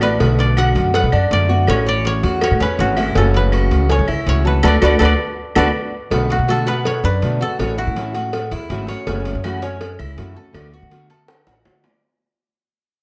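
Relaxed and danceable, this fragment of Cuban son and guajira moves at 162 BPM in a straight 4/4, with a dry koto played with fingerpicks carrying the melody until 9.9 seconds over a full-bodied nylon-string guitar with audible finger squeak, a metallic, double-strung Cuban tres picking arpeggios, a thumpy, gut-strung upright bass up front, tight, high-tuned cowbell and bongos set back in a large room, and woody claves in the background that drop out at 5.6 seconds and return at 9.4 seconds, inside a dark, warm production with a band accent, a fade-out and a closing drum fill.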